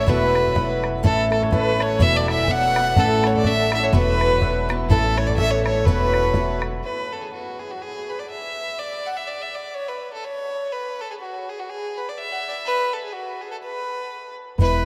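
Rollicking and lively, this Celtic polka in 2/4 bounces along at 124 BPM with a light swing on the eighth notes, set in a vast, echoing cathedral-like space with a long, wet reverb. A rich, smooth fiddle carries the melody up front with a light vibrato and an even bowed tone, while a very quiet, shimmering hammered dulcimer and a distant, pure wooden flute with a crisp attack add second lines behind it. A boxy, woody old ladder-braced acoustic guitar picks out the accompaniment over a pizzicato upright bass with steel strings, and a tight, damped bodhran sits in the background, all moving between Esus2 and A chords. Around 6.8 seconds the harmony falls away and the band thins out; the ringing dulcimer lingers until 8.6 seconds before the fiddle plays on alone. The full group returns for a brief moment at 14.6 seconds, as this excerpt is cut from a longer piece.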